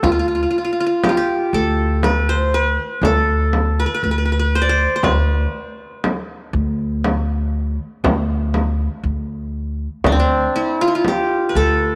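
The plectrum-plucked qanun leads this melancholic, hypnotic Turkish makam piece, its bright triple strings carrying the melody between C4 and D5 in D makam huseyni. Beneath it, an upright bass plays pizzicato on steel strings, holding a woody, dark D2 throughout. A large, deep frame drum played with soft hands keeps a straight 10/8 pulse at 120 BPM in eighths, dropping out at 11.3 s while the qanun and bass continue to 12.0 s. All three instruments sit up front, with the drum carrying a small-room character inside a moderate echo chamber reverb with a 2.5-second tail. This single section is cut from a longer piece.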